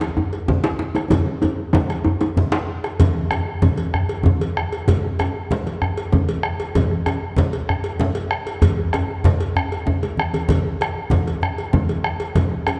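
Set in a dark, reverberant concert-hall sound, this festive and powerful West African traditional drum ensemble excerpt moves at 128 BPM in a straight 12/8. A round, up-front bombo and a metallic, distant cowbell run throughout alongside a deep, close djembe struck with hard hands, while low-tuned, thick-skinned congas played with soft hands join at 0.5 s. A medium-tuned, vintage-sounding, band-limited second djembe sits up front until it drops out at 2.7 s, and a drum fill returns at 9.9 s.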